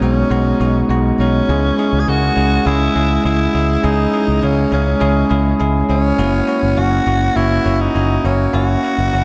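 1980s-style pop with a romantic, uplifting mood, moving at 102 BPM in a straight 4/4 and cut from a longer piece. A growling tenor saxophone carries the melody from start to finish, close-miked and raspy with vibrato and a touch of delay, sitting up front in a pop solo style. Alongside it, a bell-like tine electric piano plays clean, bright accompaniment throughout. A picked electric bass run through an envelope filter adds a punchy, amped low end across the full 9.2 seconds. The chords move from B6 to C#m at 1.5 seconds and on to F#7 at 6.2 seconds, all bathed in a dreamy cathedral reverb with a 5.9-second decay.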